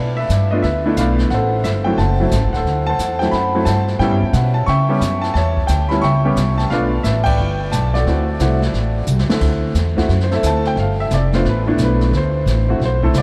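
A swung 4/4 at 178 BPM drives this playful, relaxed jazz piano trio in D mixolydian, moving through dominant-seventh changes on G7, D7 and A7 in a brief cut from a longer piece. A clear, up-front concert grand carries the melody with deep bass, over a woody, dark pizzicato upright bass with steel strings. A distant, roomy brush kit with dark cymbals and a boomy kick joins at 0.3 s. The band hits an accent at 7.2 s, and after a short drum fill the piano takes a solo from 9.4 s, all set in a vast cathedral reverb that lingers long after each note.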